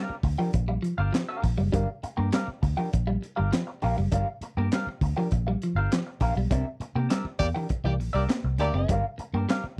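A straight 4/4 funk groove is driven by a gritty, saturated breakbeat kit with a high-tuned snare, tight kick, hi-hat and handclaps, alongside a round, foam-muted fingered bass that sits up front in this hypnotic, cool fragment. A dark, clean electric guitar picks a low riff while a slightly broken-up, compressed guitar adds wah-inflected accompaniment, and the band hits an accent from 6.5 seconds as the harmony moves from Gm7 to C9 and back. A punchy horn section with light vibrato joins at 7.4 seconds, all captured in a dry, close 1970s-style studio sound.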